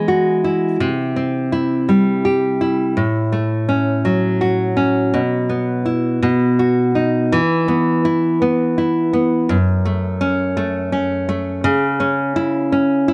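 A straight 6/8 pulse at 56 BPM carries this tender, romantic pop fragment, played by a solo fingerpicked nylon-string guitar with a deep classical tone and audible finger squeak, sitting up front in light reverb as the chords move from Eadd9 through C, A6 and Bsus4 to B before a new passage at 7.3 s turns to E5, F#m and C#m.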